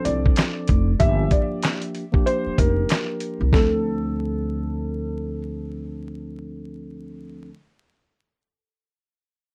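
A dark, slightly detuned upright piano carries the melody through tape echo, with audible action noise, over a mellow tine electric piano, opening this moody boom-bap hip-hop piece in D minor at 95 BPM with a 60% swing on the sixteenths. A woody pizzicato upright bass and a gritty, compressed sampler-style kit with thumpy kick, fat snare, hi-hat and handclaps sit up front as the harmony moves from Dm7 to Gm7 and back, and the drums stop at 3.7 seconds. Worn, warbling cassette tape with vinyl crackle, pitch drift and light reverb colours the recording, and the piano stops at 5.4 seconds, leaving the electric piano and bass to play on until 7.5 seconds.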